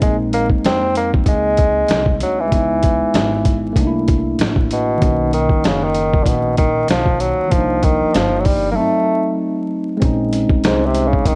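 A smoky, mellow jazz-hop groove in Bb minor at 96 BPM with a swung feel opens on a gritty, pitched-down boom bap drum kit with a thumpy kick, an up-front bassoon melody with light vibrato, a smooth top and analog delay, a clean tine electric piano heard through its built-in speakers, and a woody, dark pizzicato upright bass, all set in light reverb and vinyl crackle, moving into a break at 8.8 seconds before the bassoon takes a solo at 10.0 seconds in this cut from a longer piece.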